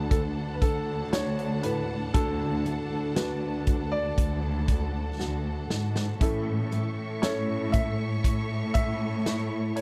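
Emotional and tender, this 59 BPM pop ballad excerpt sets an open-toned concert grand piano melody over a dark, up-front bowed cello bass, with lush vibrato strings holding chords, a felt-muted upright piano with audible action noise and a fingerpicked steel-string acoustic guitar tucked in the background, and a punchy country drum kit that plays a fill from 5.2 seconds before the harmony moves from D to A at 6.2 seconds, the whole heard in a dry, close 1970s-style studio sound.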